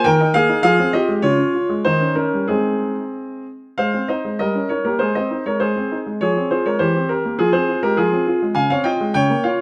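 Cheerful and playful, this short excerpt from a classical-period piano sonatina moves in 2/4 at 92-103 BPM with a rubato feel, in Ab major with tuning at A4 = 444 Hz. A clear, open baby grand piano plays solo and up front, spanning Db3 to Ab5, as its opening phrase is stated at 0.0 s and returns at 3.8 s, passing through chords such as Eb7, Fm and C7/E before settling on Dbmaj7 at 8.6 s. A moderate recital hall reverb of 1.3 s surrounds the instrument, and the production leans dark.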